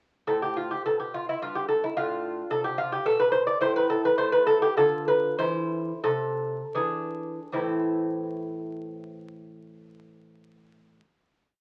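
Through the crackle of a very old 78 rpm record, a solo lute enters at 0.3 seconds with a grave, flowing baroque-style dance in A minor and 3/4, its delicate, fingerpicked gut and octave-doubled strings sitting up front in a moderate club reverb as a single-line melody rides over a walking bass at a rubato 74-111 BPM, slowing from 2.8 seconds until the piece settles on a final A minor chord at 7.5 seconds.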